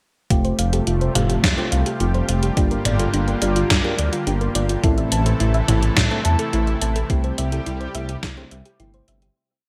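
Synthwave with a dreamy, uplifting mood: a lush, warbling unison pad holds sustained chords over Fadd9, Gm7, Am and C6, while a tine-like FM pluck runs a four-step arpeggio through chorus and digital delay under a filter sweep. A soft FM electric piano adds dotted-rhythm stabs with phaser, and a dark, detuned saw bass drives eighth notes, pumping against the overdriven, thumpy electronic kick. An up-front 80s drum machine supplies closed hi-hat, low tom and a gated-reverb snare backbeat in a bright 1980s-style digital production, and the piece fades out from 6.3 seconds as the kick drops away at 8.3 seconds.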